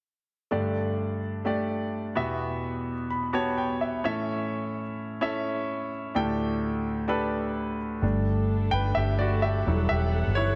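Set in a moderate concert hall reverb, this hopeful pop excerpt at 128 BPM in G lydian, swung on the 16ths, opens at 0.5 s with a bright, polished concert grand piano moving through chords such as Gsus2, Emadd9 and A and adding a fill at 2.9 s, before a round, foam-muted fingered electric bass and a lush, bowed studio string section with vibrato join at 8.0 s as the piano takes a solo.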